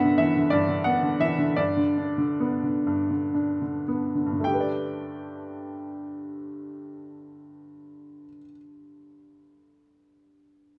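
This classical excerpt features a lyrical solo upright piano in G major, tender and calm in mood, moving in a flexible rubato 6/8 at roughly 34-62 BPM counted in dotted quarters. The piano sounds clear, woody and slightly detuned, with a natural, up-front presence in a light reverb, spanning from G2 up to G5 across the full 10.8 seconds. The opening passage slows down through its first 4.4 seconds, resting on a G6 chord before settling onto plain G at 1.6 seconds. At 4.4 seconds a second section begins on a Gadd9 harmony, carrying the gentle mood onward until the cut from the longer piece.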